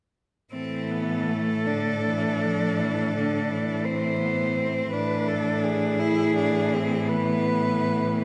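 Classical and lyrical, this solemn, elegiac excerpt for a cello ensemble moves with a rubato 12/8 feel in a reverberant recital hall, where a clear, focused second line up close, a rich, smooth-topped accompaniment, and a bright bass cello set further back begin at 0.5 seconds, and a soft-attacked, expressive cello joins at 0.6 seconds to sing the melody with vibrato and portamento up front, all bowed with vibrato as the harmony shifts from Am to E7/A at 4.9 seconds.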